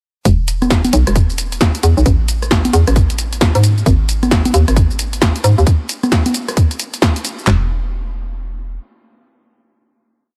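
A hollow, knocking FM bass bounces through a skipping, syncopated line from 0.3 to 8.8 seconds in this short, sunny and soulful two-step UK garage piece. It plays over a garage drum kit's tight four-on-the-floor kick, toms and handclaps, and over a punchy analog drum machine re-recorded in a small room that adds swung hi-hats, rim clicks, shaker, congas and a punchy snare. The drums stop at about 7.5 seconds, and the bass carries the final note in light reverb.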